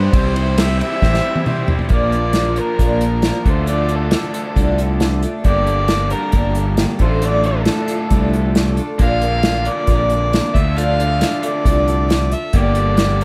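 A nasal, reedy fiddle with a gut-string tone carries the melody in this dusty, reflective folk rock and heartland rock excerpt, set in D minor at 135 BPM in a straight 4/4. Beneath it, a shimmering, octave-doubled twelve-string acoustic guitar picks out a boxy accompaniment in the background. A raw, overdriven garage guitar, double-tracked and bright, drives a riff alongside it, while a fingered electric bass sits up front. An unplugged drum kit played with bundle sticks enters at 0.1 seconds, with a tight kick, dark cymbals and a small-room airiness, and plays a fill from 1.0 to 1.9 seconds into the main section. A very quiet, distant studio string section holds sustained chords with soft attack, vibrato and portamento under a light reverb, as the harmony moves from C through Bb, Dm and Gmadd9.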